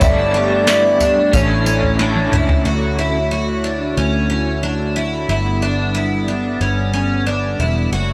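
Over a straight 4/4 pulse at 91 BPM from a soft vintage rhythm box with deep kick, crisp snare, tambourine and toms that plays a fill from 2.0 to 2.6 seconds and stops, this dreamy, blissful dream pop excerpt layers a woody, clarinet-like synth lead with chorus, phaser and analog delay, a dark overdriven semi-hollow guitar with tremolo and ensemble chorus, a flute-like hollow pad holding sustained chords, a shimmering, octave-doubled twelve-string acoustic arpeggio up front with lush chorus and delay, and a round, foam-muted fingered bass, moving from Gadd9 and A to Dmaj7 and G under light reverb in a gritty hardware recording.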